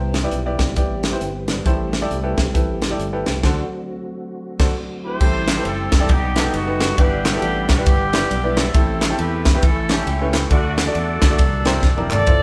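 A crisp fusion drum kit with a punchy kick and high-tuned snare drives this hopeful, jubilant swung gospel excerpt alongside a growly fingered electric bass, a clear baby grand piano and a tonewheel organ holding background chords through a slow rotary speaker, before a mellow vintage horn section with light vibrato takes the melody at 5.0 seconds and very quiet handclaps enter at 5.5 seconds, the band ringing in a moderate stone-room reverb.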